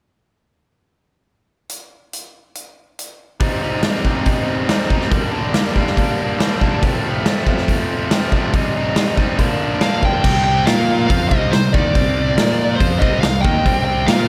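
A driving, straight 4/4 pulse at 140 BPM opens at 1.7 seconds, with a big rock drum kit of punchy kick, medium-tuned snare, hi-hat and bright crash cymbals set up front, giving this brooding classic rock piece in C dorian its push. At 3.4 seconds a biting, double-tracked overdriven guitar riff enters with a slapback echo, moving through Cm, Gm, F and Bb. A dark, distorted lead guitar adds a bluesy melody from 9.8 seconds, and a picked electric bass joins underneath as the chords shift to C5 and Bb5, all set in a lush hall reverb with a big arena sound.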